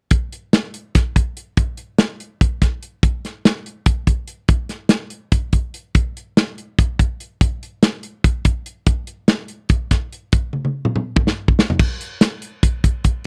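A modern studio drum kit opens this short rock excerpt, with kick, snare, hi-hat, toms and crash cymbal set up front in a playful, wistful 7/8 at 288 BPM counted in eighths with a straight feel. The kit sounds acoustic and mid-forward, with a tight kick, a medium-tuned snare and a rolled-off top, captured dry and close in the manner of a 1970s studio. A drum fill from 10.5 to 11.8 seconds leads into a brief new section before the drums stop at 13.1 seconds.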